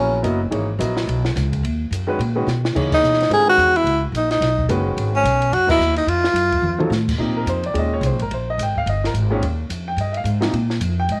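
This excerpt from a longer piece sits in a small room with light reverb, giving the band a close, intimate sound. It is modal jazz in 4/4 at a brisk 216 BPM with a swung feel, cool and spiritual in mood. A close-miked tenor saxophone carries the melody up front with light vibrato, soft attacks and scooped notes, stating its main phrase from 2.9 to 6.9 seconds. A natural-sounding baby grand piano accompanies throughout, while a woody, growly upright bass, plucked on steel strings, anchors the low end. A dark, compact cocktail drum kit with a high-tuned snare and punchy kick adds brief fills, the band lands a couple of shared accents, and from 7.2 seconds the harmony settles into Bb dorian.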